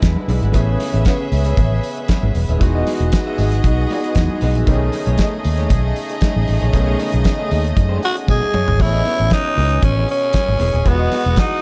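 This joyful, danceable disco fragment moves at 116 BPM in straight 4/4 and opens with most of the band at once. A damped 70s drum kit with a fat snare and tight kick drives it, joined by a round, punchy, foam-muted fingered bass sitting up front. Above them a biting, intense violin section plays a second line with vibrato. Behind it sit a clear grand piano, a slightly broken-up electric guitar with tremolo, and a brass ensemble holding sustained chords with light vibrato, while ringing congas add very quiet percussion and a jingly tambourine joins at 0.5 s. The harmony moves through E7, Amaj9, Emaj9 and B13, tuned slightly low to A4 = 438 Hz. A growling, raspy tenor saxophone enters up front with the melody at 8.1 s, and piano and drum fills lead into a new section at 8.8 s, all set in a dark, warm production with little reverb.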